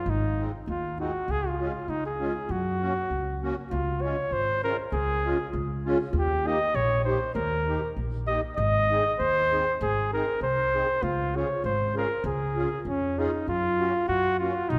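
A punchy, close-miked flugelhorn carries the melody up front in classical style in this jolly, bouncy alpine folk dance-band piece in 2/4, cut from a longer work, with a woody pizzicato upright bass also up front and a reedy, shimmering musette accordion filling in the accompaniment, the trio set in a wet concert-hall reverb as the music shifts to a new section at 3.7 s and returns to its opening material at 13.5 s.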